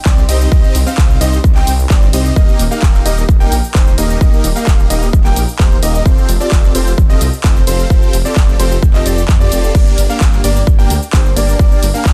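A straight 130 BPM pulse in 4/4 drives this short cut from a festival progressive house track, led by a punchy, overdriven electronic kick that sits up front and dominates the mix. Around it, a layered big-room dance kit adds crash cymbal, handclaps, hi-hat and shaker, all playing from the first moment to the end at 12.1 seconds. A thick, menacing detuned saw bass with a saturated, beating edge anchors the low end, while huge, lush supersaw chords carry the riff through a chorus effect, tape echo and sidechain pumping that makes them breathe with the kick. High above, a warm, intimate grand piano plays arpeggios with audible action noise, also pumping and trailing tape echo. The harmony moves through Cm, Eb, Fadd9 and Gm in a dense, heavily limited and nearly dry master that feels euphoric and powerful.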